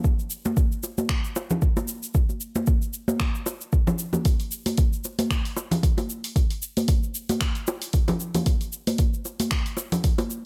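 Downtempo groove with a meditative, mystical feel, where a soft, tape-warm electronic kick sits up front from the start alongside a layered deep house kit of finger snaps, dark hats and shaker, joined at 0.5 seconds by ringing, close and dry bongos and congas, all lightly swung over a digital ambience in this short section cut from a longer piece.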